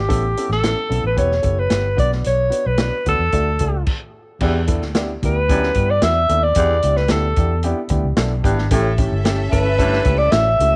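A lightly reverberant sound frames this short, uptempo 1960s-style soul excerpt at 112 BPM, where an up-front, subtoned alto saxophone carries the warm, uplifting melody over a round, foam-muted electric bass, a mellow, woody upright piano and a punchy small-room vintage drum kit with dark cymbals. After a brief stop at 3.9 seconds, a raspy, gritty baritone saxophone enters at 4.4 seconds with a distant riff, and a lush bowed string section adds a second line from 8.7 seconds as the harmony moves to A7.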